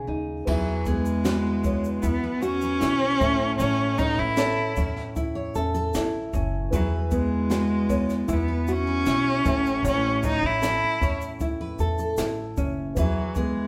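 Acoustic pop at 77 BPM in E major, carefree and heartfelt, where a clear, bowed cello with vibrato carries the melody up front over a fingerpicked nylon-string guitar and a woody, pizzicato upright bass, joined at 0.5 seconds by a very quiet, mellow upright piano, a picked steel-string acoustic guitar with finger squeak playing arpeggios, and a brushed jazz drum kit with dark cymbals and a high-tuned snare, all moving between Eadd9 and A as a live band in a stone room with faint mains hum, in a passage cut from a longer piece.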